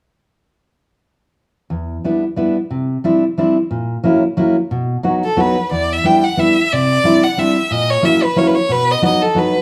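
Musette in E minor at 180 BPM in 3/4 with a light swing, bittersweet and whirling in mood, cut from a longer piece and tuned slightly below concert pitch. A dark, full-bodied fingerpicked steel-string acoustic guitar sits up front from 1.7 seconds, cycling through Em7, Cadd9, F#7/A# and B with audible finger squeaks. At 5.2 seconds a clear, biting violin joins with intense vibrato and airy bow, the band sounding live in one room bathed in a large studio reverb.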